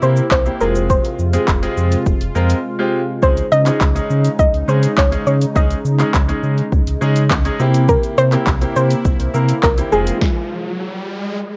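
Carefree and summery, this short dance-pop clip moves at 103 BPM in a straight 4/4, cut from a longer piece and coloured by a worn, warbling cassette-tape character with pitch drift and light reverb. A soft, round pluck carries the melody between Ab4 and Eb5, its gentle, dark tone thickened with chorus and tape echo, and it rings on to 11.6 seconds. Beneath it a bright concert grand piano plays short-sustained accompaniment, while a sweeping, resonant pad of detuned sawtooth and ring modulation sits in the background with filter swells; both piano and pad pump against the kick, as does the deep, sine-based sub bass with its octave. An overdriven deep house kit with a deep kick, punchy snare, handclaps, hi-hat and shaker sits up front, pausing briefly for a break between 2.6 and 3.2 seconds. The harmony moves from C7 to Fm, settles on Dbsus2, and returns through C7 to Fm. An electronic riser enters at 9.6 seconds, and once the band stops at about 10.2 seconds it carries the pluck toward the cut.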